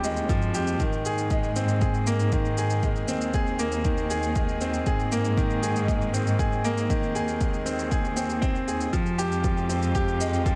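Moving and intimate, this excerpt of piano-and-strings electronica runs at 118 BPM in a straight 4/4, moving between Fmadd9 and Abadd9. A brilliant, up-front concert grand piano plays a delayed riff over a smooth, bowed cello section whose bass line pumps with sidechain. A dark, very quiet string quartet holds soft-attack sustained chords played sul tasto. A produced shaker runs throughout, and a layered, tape-warm electronic kick joins at 0.3 seconds, all set in a small room with light reverb.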